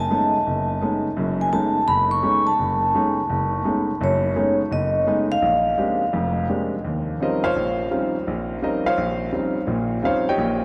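A swung 4/4 at a brisk 169 BPM carries this searching, spiritual jazz passage, which is cut from a longer piece and set in a vast, echoing space with long cathedral reverb. A metallic, ringing vibraphone, close-miked and full with a slow motor vibrato, states the melody over B13 and A#13 harmonies until 6.5 s. An intimate, up-front grand piano, clear and natural with audible action noise, accompanies throughout, carrying the music alone after the shift to Eb mixolydian and an Eb13 chord at 6.8 s until it ends at 10.6 s.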